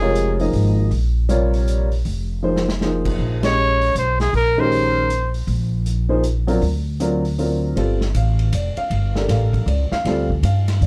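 A brief trumpet entry with plate reverb opens this intense, cool modal jazz piece in a swung 3/4 at 158 BPM, alongside an intimate, slightly detuned upright piano with audible action noise, a growly, thumpy pizzicato upright bass and a vintage drum kit with dark cymbals and a punchy kick, the light-vibrato trumpet returning at 3.5 s after a drum fill and band accent as the Bb dorian harmony moves through an altered dominant to G minor at 7.8 s in a dark, warm production.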